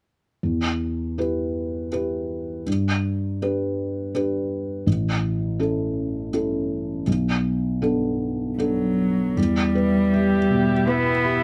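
Reflective and melancholic, this brief neoclassical excerpt in E dorian drifts at a rubato 81 BPM in 3/4, opening on a felt-muted upright piano whose thick-felt, intimate tone and audible action noise sit up front through an Em, G, A, Bm7 progression, before a veiled con sordino cello with portamento enters at 8.6 seconds, a glassy, ethereal FM pad with chorus and its own reverb glows in the background from 9.9 seconds, and a distant muted viola with vibrato joins at 10.1 seconds, all captured by close, detailed microphones in a light reverb.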